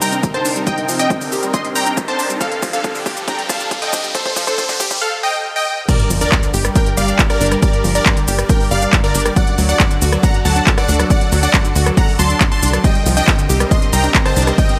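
A straight 4/4 pulse at 138 BPM, set by a punchy, tape-warm electronic kick and a layered techno kit of crash, handclaps, smooth hi-hats, rim clicks and shaker, drives this soaring, euphoric uplifting trance in G minor, cut from a longer piece, where a filter-swept build-up of round analog pluck arpeggios, a thick, phaser-treated unison pad in the background and a riser and sub drop gives way at 5.9 s to the drop, as a dark, detuned sequencer bass enters at 6.1 s beneath a bright, sidechain-pumped supersaw stab melody with cassette-tape colour and delay over chords moving from Cm7 through Gm and D.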